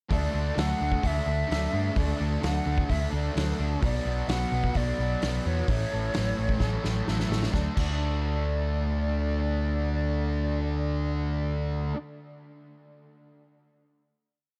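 Dark, reverb-soaked production frames this hazy, dreamy shoegaze and dream pop piece, where a double-tracked fuzz guitar strums chords with whammy-bar dips beneath an airy concert flute carrying a vibrato-laced motif through slapback echo, a round picked bass drives eighth notes, and a loose indie drum kit with a punchy kick grooves until a fill at 6.6 seconds leads into the final chord, the drums falling away at 7.9 seconds.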